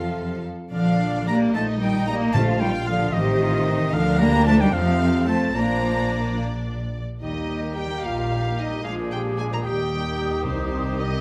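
A dark, intimate cello section shares the bass with expressive double basses in this lively, spirited 6/8 classical-period orchestral passage, where a smooth violin section carries the melody over a clear oboe, a soft-edged chamber violin section, lush violas in the background, and mellow French horn chords, while hard-mallet timpani add very quiet accents from 2.3 s and a pure, hollow flute ensemble joins from 7.2 s in light reverb.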